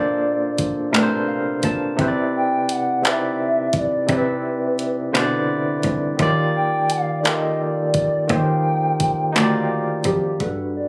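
Slow, sensual R&B in a straight 6/8 at 57 BPM, this short excerpt from a longer piece moves through Bbmaj9, Cmaj9 and Ebmaj9 chords while a hollow, woody clarinet-like synth lead with chorus and vibrato carries a soft, sustained melody between G4 and G5. Up front, a barky, lightly overdriven tine electric piano with fast tremolo provides the accompaniment and plays a fill from 0.9 to 2.0 seconds, while a clear, focused bowed cello with vibrato holds down the bass. A smooth electronic drum kit with a soft kick, warm hi-hats and handclaps enters at 0.6 seconds, all captured on a phone in a lightly reverberant room with studio ambience.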